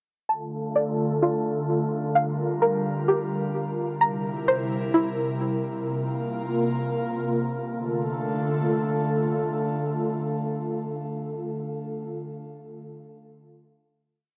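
Both parts enter together at 0.3 seconds: an airy, breathy pad holding sustained chords up front, and a bright, twangy string-like resonator pluck tracing falling arpeggios in quarters, repeated like a sampled loop. This short, eerie and dark hip hop piece in a trap style sits at 129 BPM in a half-time 4/4 feel, in D minor, moving through Dm, Gm7, C7 and Bbsus2 before settling back on Dm. The pluck carries chorus, a low-pass filter and analog delay, with a fast attack that decays and a filter sweep running through the breakdown. The pad, soft and detuned with a noise layer, a slow attack and a long release, uses chorus and a low-pass filter along with a moving notch. The pluck stops at 5.9 seconds, leaving the pad to ring out through the final chord from 7.7 seconds and sustain until 12.0 seconds. Light reverb and a digital ambience frame a dry, gritty hardware recording.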